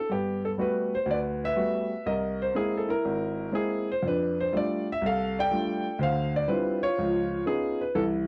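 Jazz for solo grand piano, this short fragment of a longer piece swings at 122 BPM in 4/4 with a sophisticated, swinging mood. The piano is smooth and vintage in tone, sitting up front and spanning G#1 to G5 as it plays alone from start to finish across 8.3 seconds. Its harmony moves through rich extended chords, opening on Gmaj9, passing through Caug7 and F69, then reaching Dm11 at 6.0 seconds and C#9 at 7.0 seconds. The sound is dry and close, with little reverb, in the manner of a 1970s studio recording, which keeps every voicing intimate and immediate. The tuning sits slightly sharp, at A4 = 441 Hz.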